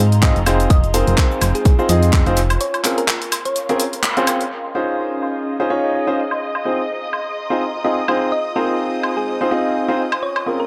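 An echo-heavy mix with moderate spring reverb gives this energetic, soulful piano house cut a roomy, dubby sheen, taken from a longer piece and played with a swung sixteenth-note feel. Up front, a warm concert grand piano with deep bass carries the riff, while a punchy, round FM bass pumps under sidechain compression beside a tape-warm electronic kick, re-recorded in a large room, until the bass drops out at 2.6 seconds for a break. A layered house drum kit of handclaps, hi-hat, shaker and woodblock runs throughout, its hats, percussion and snare softened by low-pass filtering and trailed by dub echo. A tine-like, detuned synth pluck with chorus sings the melody in two stretches, and an airy, breathy pad with a slow attack and moving notch drifts in the background. After a band accent at 4.0 seconds, a lush, bowed violin section enters at 4.5 seconds with vibrato-rich sustained chords and a filter sweep, as the harmony moves from Fm7 and Bbm9 to Dbmaj9 and Ab6.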